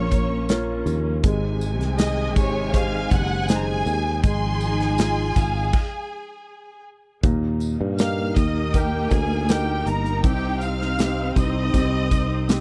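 A heartfelt pop ballad at 80 BPM opens with a lush violin section carrying the melody over clear grand piano, vibrato-laden strings holding sustained chords with expressive portamento, and a growly fretless bass up front, joined almost at once by a punchy, polished drum kit and a faint jingly tambourine, while a more distant violin line adds a second voice from 1.2 s to 5.7 s before a brief stop and a settling into Eb major at 7.2 s, all captured in a dry, close 1970s-style studio sound.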